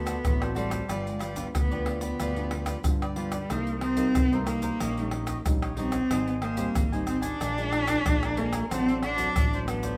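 In a wet studio reverb, this playful, sunny samba and choro excerpt puts a rich, bowed cello melody up front with expressive vibrato and portamento, over a bright, crisply picked cavaquinho, a warm, thumb-plucked nylon-string guitar with audible finger squeak, a round fingered electric bass, and close, dry tube shaker, pandeiro, tamborim and a tight surdo.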